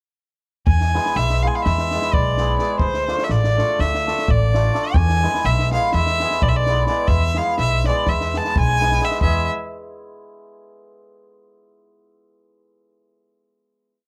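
At 0.7 seconds a rich, smooth violin with vibrato opens a fiery, bittersweet Balkan wedding-band piece in 9/8 at 253 BPM in eighths, playing up-front hook phrases over a woody pizzicato upright bass sounding root and fifth on the main beats and a compact cocktail drum kit set back in the distance with a punchy kick and high-tuned snare, while from 0.9 seconds a mellow, shimmering hammered dulcimer adds close-voiced off-beat chords as the dry, intimate sound moves through E and D minor back to E before a final chord rings out from 9.2 seconds.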